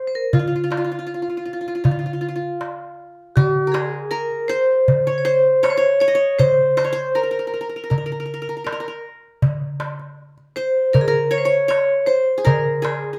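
A metallic, ringing vibraphone struck with medium-hard mallets carries the melody up front, its fast motor vibrato giving a bright shimmer to this hypnotic, longing Arabic maqam piece in a straight 4/4. Alongside it, at a softer level, a plectrum-plucked qanun with triple strings adds an acoustic, bright-edged second line, while a small metal-shell darbuka keeps crisp, high percussion close in the mix from 0.3 seconds. Light reverb surrounds the ensemble, and a new section begins at 3.4 seconds in this passage cut from a longer piece.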